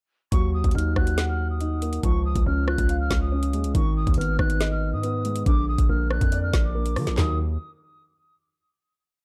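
This tense, cold drill track opens at 0.3 seconds with everything arriving together: an airy silver flute loop high above a dark, boxy grand piano arpeggio rising and falling in eighths, both filtered and repeated like a sampled loop, over a half-time beat at 140 BPM in Eb minor. The flute sits distant, with a crisp, chiffy attack and a straight, slightly unsteady tone, while the piano adds deep bass weight beneath it. Up front, the electronic drum kit drives a drill pattern of knocking kick, woody snare, handclaps, rim clicks and toms, with metallic, skipping hats breaking into fast hi-hat rolls. A punchy, heavy 808-style bass follows the kick with long sub-bass notes and pitch slides, its sine tone layered with noise. The hook cycles through Ebm, Db, Abm and Bb inside a dark digital ambience, and at 7.2 seconds the loop gives way to a final chord as the bass rings on to 7.6 seconds.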